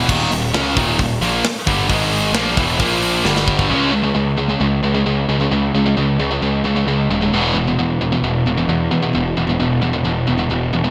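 Two distorted guitars and a fuzz-drenched picked bass open together on a heavy riff, backed by a tight metal drum kit, setting a heavy, epic heavy metal mood at 132 BPM in a straight 4/4. The brighter, tight distorted guitar sits up front while the sludgy, dark overdriven guitar lurks in the background, and the growly bass pushes forward with a direct, amped snarl. The drums, with a tight kick, medium-tuned snare, crash and hi-hat wrapped in gated reverb, close with a fill from 3.3 to 3.7 seconds and then drop out. From there the guitars and bass carry the riff through the second section, moving through power chords such as Db5 and E5. A moderate, lush hall reverb and a bright 1980s-style digital sheen give this cut from a longer piece a big, polished sound.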